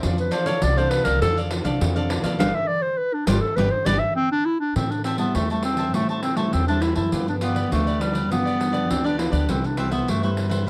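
A dry, close 1970s-style studio sound with light reverb frames this yearning, nostalgic samba and choro excerpt at 102 BPM in straight 4/4, where a warm, up-front classical clarinet carries the melody from 0.2 s, leading a featured passage over a band accent from 2.4 s before the harmony settles into A minor at 4.8 s, supported by crisp, picked cavaquinho, a fingerpicked nylon-string guitar in the background, a woody, growly pizzicato upright bass, and a jingly, distant pandeiro played with soft hands.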